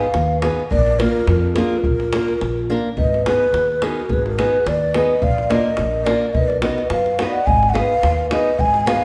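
A swung 2/4 lilt drives this restless, virtuosic Balkan wedding-band folk excerpt, where a breathy, hollow end-blown ney with vibrato carries the melody up front over a ringing vibraphone second line with slow motor vibrato, fingerpicked flamenco guitar accompaniment, woody pizzicato upright bass and a tight, saturated davul, the whole band sitting in a moderate recital-hall reverb as the chords shift beneath.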